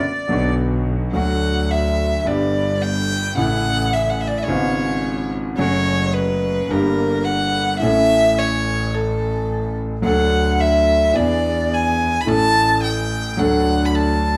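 Set back in a wet studio reverb, this passionate, sultry tango, cut from a longer piece, moves at a rubato 108 BPM in D major. It opens with a reedy, airy bandoneon note, joined at 0.3 seconds by an intimate, boxy concert grand piano with audible action noise and a deep, long-sustaining low end, plus an earthy, distant bowed double bass; the bandoneon falls away by 0.5 seconds, before a close, up-front violin enters at 1.2 seconds for an expressive solo rich in vibrato and portamento.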